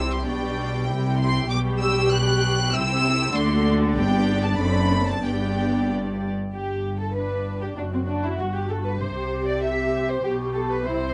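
A quick, cheerful classical-period movement for string orchestra in G major at 97 BPM in 2/4, this graceful passage cut from a longer piece sets a floating, pure-toned violin section on the melody above a smooth-topped second violin line. Beneath them, a dark, woody viola section adds lush accompaniment with vibrato, while distant cellos and double basses anchor the bass with soft attacks. Every section plays sul tasto throughout the 11.1 seconds, under light reverb, as the harmony moves from G/B and C through D7 back to G.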